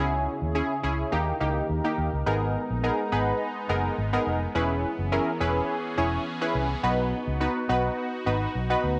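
Pop with a bittersweet yet energetic mood, this short excerpt from a longer piece moves in a straight 4/4 through C#m and D# to G#madd9, E6 and B. A punchy, nasal polysynth comp with a detuned sawtooth tone, a filter sweep and chorus sits up front beside a dark, round, foam-muted vintage electric bass. A bright, evolving resonant pad with a slow attack and long release holds sustained chords beneath them, and a moderate echo chamber reverb adds a digital ambience.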